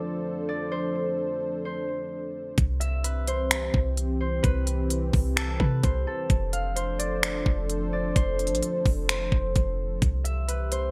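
Bright 1980s-style digital production with light reverb frames this dreamy, blissful fragment of atmospheric cloud-rap hip hop in half-time, where a ringing, fingerpicked concert harp melody, softened by a low-pass filter and digital delay, floats over a moody, detuned analog pad with chorus and sidechain pumping, and at 2.6 seconds a boomy, sine-like 808-style bass and an up-front trap kit, with knocking kick, crisp hi-hats, finger snaps and gated reverb, join them.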